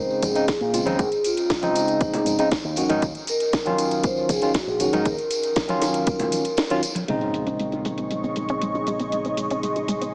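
Heavily compressed as if heard through a small radio speaker with light reverb, this sleek, cosmic nu-disco passage at 118 BPM in Bb minor sets a mellow soft-mallet vibraphone melody over a barky, lightly overdriven tine electric piano pumping through phaser and dub echo, an envelope-filtered fingered bass, a punchy up-front electronic kick, a house kit with metallic hats and cracking snare, and vintage tambourine and congas, until at 7.1 s an impact, a background sub drop and filter-swept, warbling detuned pluck arpeggios arrive, joined at 7.9 s by a lush, chorused sawtooth pad.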